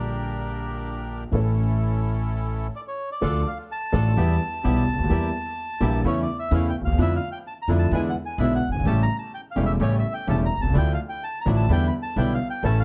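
Tense and sultry, this tango moves at 128 BPM in 4/4 with a rubato feel, set in D harmonic minor and cut from a longer piece. A warm, natural upright piano sits up front with plate reverb, while a pizzicato upright bass on gut strings thumps out a dark, woody low end and a quieter bandoneon adds reedy, airy stabs through plate reverb and tape echo. During a brief stop that begins at 2.7 s, a bright second bandoneon takes up the melody from 2.8 s, high over chords that pass from Dm through Edim and E7 to A7, all in a dark production with light reverb.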